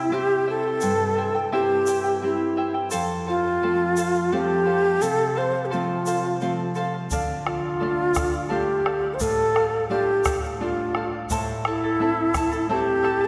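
A breathy large quena with woody vibrato and tongued notes carries a wistful yet festive melody up front in this Andean folk piece at 86 BPM in 3/4, over a shimmering fingerpicked charango with double strings and a full-bodied nylon-string guitar moving through C, F, Dm and Am, while a grainy, bright tube shaker enters at 0.8 seconds and a round, dry bombo joins at 7.1 seconds, the ensemble set in a lingering church reverb.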